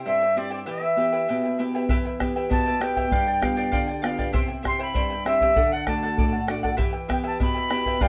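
In a straight 2/4 at 98 BPM, this short cut from a longer Andean folk piece in E minor feels festive yet melancholic, with fingerpicked charango shimmering on its double strings and an up-front nylon-string guitar supplying warm, small-bodied accompaniment. From 0.1 seconds a bright, reedy cane quena carries the melody, airy and tongued with a noticeable chiff, while a deep, dark, close and dry bombo joins at 1.9 seconds. The ensemble sits in a moderate small room, and the chords move from C to Em, G7, C, D and back to Em.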